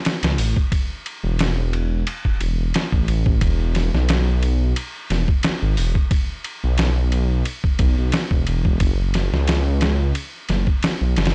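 A swung, 89 BPM trip hop groove in 4/4 sets a dark, melancholic mood in this short, dry and gritty cut, with a muffled, pitched-down sampler drum kit of thumpy kick, medium-tuned snare, hi-hat and ride carrying vintage 12-bit grit up front, while a deep, rumbling detuned saw bass with a beating unison tone sustains from E1 to C#2.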